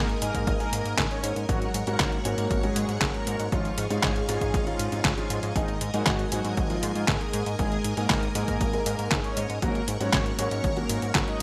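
A straight 4/4 pulse at 118 BPM drives this danceable, melodramatic slice of italo disco, cut from a longer piece. A punchy, layered electronic kick sits beneath a detuned 8-bit drum machine whose overdriven handclaps, hi-hat and fat snare are pushed up front with a small-room character. A thick, nasal analog bass with tube saturation and a quick filter pluck anchors the low end, while a warm baby grand piano adds short stabs from the background. Above them, a lush vintage string machine holds sustained chords with a slow attack and ensemble chorus, and a mellow, dark synth brass carries the melody with a round, brassy tone, vibrato, chorus and delay. The harmony circles around G#sus2, F#/G# and C#add9/G#, and the whole mix has a bright 1980s digital sheen with moderate plate reverb.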